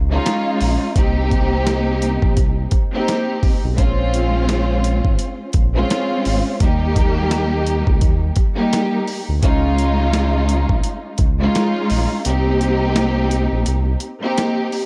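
Moody and reflective, this boom-bap hip-hop excerpt moves at 85 BPM in 4/4 with a swung sixteenth-note feel. A smooth synth bass built from detuned sawtooth and triangle tones sits up front, its fast attack giving way to sustained, mellow low notes. A dark, lush studio string section carries the accompaniment with bowed, vibrato-rich ensemble playing and a filtered, silky top. A dusty soul sampler-style drum kit adds a thumpy kick, a medium-tuned snare and hi-hat, all compressed and overdriven for a gritty edge, with the kick dropping out from 12.3 seconds to the end. The harmony cycles through Dbadd9, Cm7, Bbm7 and Eb in a dry, close-sounding mix.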